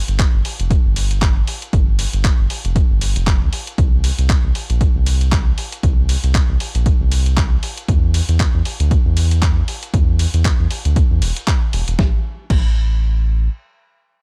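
A swung deep house groove at 117 BPM in 4/4, with a 57% swing on the sixteenths, drives this moody, deep excerpt cut from a longer piece. An overdriven electronic kick sits up front, punchy and layered, entering at 0.2 seconds and running to 12.7 seconds. Beside it, a dusty soul sampler-style kit adds crash and ride cymbals, handclaps, hi-hat and a medium-tuned snare, compressed and tape-warm, with the grit of a re-recording in a large room, sitting lower in the mix. The round analog bass, blending sawtooth and sine with a fast attack and sustained, dark tone, holds the low end from E1 to E2 through tube saturation and carries on alone after the drums stop, until 13.5 seconds. The whole track plays as a drop through the opening section before shifting into a brief new section at 12.0 seconds, all captured as a dry, gritty hardware recording with little reverb.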